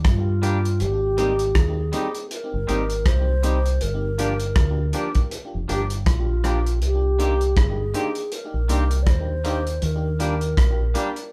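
A gently swung sixteenth-note groove at 80 BPM in 4/4 carries this bittersweet, longing lovers rock reggae excerpt in C minor: a cloth-damped, thuddy drum kit with tight kick, hi-hat and rim click sits up front beside a deep, round dub bass, while a hollow, airy alto flute carries the melody, a glassy FM electric piano with bell-like attack, chorus and tape echo fills in quietly beneath, and a twangy, scooped electric guitar adds clean stabs over chords moving from Ebmaj7 through Abmaj7, Gm7 and Cm7, all of it captured as a band playing together in one room with moderate reverb.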